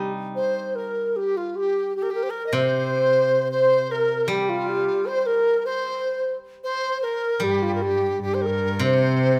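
Tender and graceful, this short cut from a longer Chinese traditional chamber piece moves at 76 BPM in a straight 2/4, set in a G jue mode with light reverb. A breathy, reedy low xiao carries the close-miked melody over a silvery, ringing steel-string zither plucked with fingerpicks, while a large dizi enters at 0.4 seconds as an airy, buzzing second line with vibrato and lifted highs. At 7.4 seconds a dark, nasal cello joins up front, bowed by one player with vibrato and portamento.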